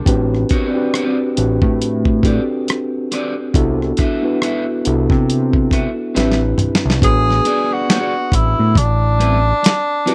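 A mellow tine electric piano and a fat, detuned sawtooth bass with a filter sweep open this soulful, introspective neo-soul and R&B excerpt at a slow 69 BPM with swung 16ths in A dorian. A gritty, compressed sampler-style drum kit with a thumpy kick and a dark, slightly broken-up picked electric guitar with spring reverb join them over chords moving from Am11 to Cmaj9#11, before a drum fill at 6.1 s hands off to a subtone tenor saxophone melody with scooped notes entering at 7.0 s over E9, all captured as a dry, close 1970s-style studio recording.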